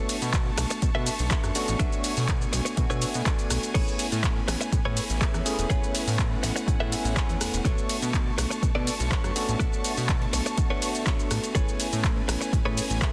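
A punchy, up-front electronic kick and a tape-toned analog drum machine of handclaps, hi-hat, shaker, rim click, ride and crash drive this sunny, feel-good filtered disco house excerpt with a straight feel. A fat, detuned sawtooth bass with a plucky filter pumps against the kick, joined by a barky, gritty electric piano through a combo amp with phaser, and a bright, scooped, direct-recorded clean guitar riff that breaks into a fill at 6.7 seconds. Behind them, a rich chamber violin section holds bowed, vibrato chords as the harmony swings between Bm9 and Amaj9 under a dense, heavily limited master.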